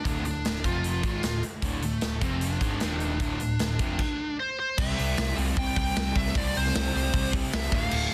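Dry and dense, with a heavily limited modern master, this aggressive, driving hard rock excerpt puts a high-gain lead guitar up front, its distorted melody carrying a slapback echo. Behind it, two overdriven semi-hollow guitars (one dark, one treated with phaser) and a double-tracked overdriven electric guitar play a riff through power chords. A bright, growly picked bass and a big, natural-sounding rock kit with bright cymbals, a punchy kick and a soft-clipped snare drive it forward until a chordless break at 4.2 s gives way to a C chord at 4.8 s.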